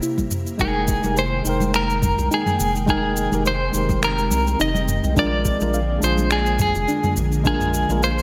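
Sunset chillout at 105 BPM in F dorian, smooth and relaxed, cut from a longer piece and riding a lightly swung sixteenth-note feel. A worn, slightly out-of-tune tine electric piano with digital delay opens alongside an ethereal, warbling pad in the background, thickened by ensemble chorus and its own reverb, while a soft, round pluck with chorus and delay spins gentle arpeggios. A tape-warm smooth R&B drum kit of finger snaps, shaker and toms carries gated reverb, joined at 0.2 seconds by a soft electronic kick and very quiet, bright congas and bongos. At 0.6 seconds a clean, compressed electric guitar steps up front with a picked, scooped melody colored by tremolo and delay, as a deep, round analog bass settles into the low end. The harmony moves from C7 to Fm11 and then to Bb7 at 5.2 seconds, all wrapped in a lush hall reverb and a bright 1980s-style digital production.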